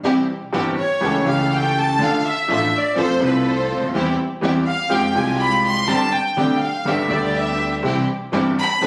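Captured on a phone in a room and bathed in a wet, large studio reverb, this melancholic, dramatic tango excerpt in C major moves with a rubato feel around 123 BPM, as a clear, up-front concert grand piano and a lush, bowed studio string section playing stabs open the passage over a woody, pizzicato upright bass, before a rich chamber violin section with light vibrato enters at 0.8 seconds to carry the second line and take the spotlight.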